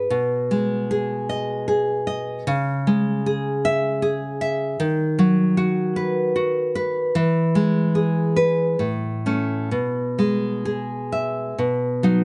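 A solo nylon-string guitar opens the 12-second excerpt, set up front with a bright, full-bodied classical tone that sounds fingerpicked from the first moment. This is a romantic piece in triple metre, played with a free, rubato feel that gives it a sunny, warm mood. The harmony moves from minor colours toward a settled home chord around 7.2 seconds, then passes through further changes before closing on a chord that leaves the phrase open, as if the music continues beyond the cut. The guitar ranges from low bass notes up into its upper register, and finger squeak adds a human touch. Close, detailed microphones and light reverb keep the sound intimate and clear.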